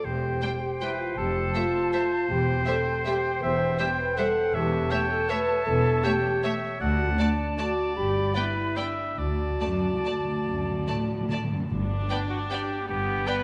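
Elegant and sweeping, this classical orchestral ballroom waltz in 3/4 moves with a rubato feel and is cut from a longer piece. A warm violin section carries the melody, high, floating and bowed sul tasto in the background, while a richer second violin section with light vibrato and a distant viola section fill in beneath. Cellos and double basses anchor the bass with pure, soft-attacked bowing, and a mellow French horn section holds sustained chords. Woodwinds add second lines: a silvery flute with vibrato, a smooth-topped oboe, and a roomy, recessed clarinet. Timpani struck with hard mallets enter at 9.2 seconds for a close, dry, articulate fill, and a dark, up-front trumpet adds stabs from 12.1 seconds, shortly after a new section begins, with a wet concert hall reverb around the ensemble.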